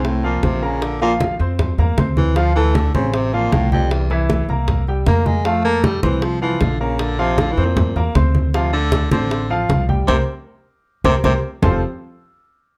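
Lively and danceable, this Afro-Cuban jazz passage, cut from a longer piece, puts an up-front baritone saxophone solo with scooped notes and a smooth top over a clear, polished upright piano and a woody, thumpy pizzicato upright bass on gut strings. Low-tuned congas with thick skin and soft hands sit beside round, dry bongos in the background, within a dark production and moderate studio reverb. A band accent arrives at 10.1 seconds, a drum fill follows at 10.7 seconds, and the saxophone stops at 11.3 seconds.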